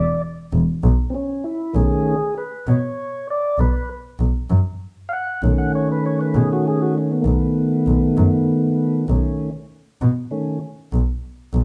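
A swaggering, soulful slow blues rolls along in 12/8 at 65 BPM with a straight feel, tuned to A4 = 438 Hz and cut from a longer piece. The tonewheel organ takes the lead with clear, clean sustained chords through a slow rotary speaker, moving from an E7 chord omitting its third to B9 at 1.8 seconds before dropping out at 10.6 seconds. A single bowed double bass played con sordino enters at 0.5 seconds with a dark, veiled tone, soft attack and vibrato, and both parts sit up front in a live one-room sound washed in wet studio reverb.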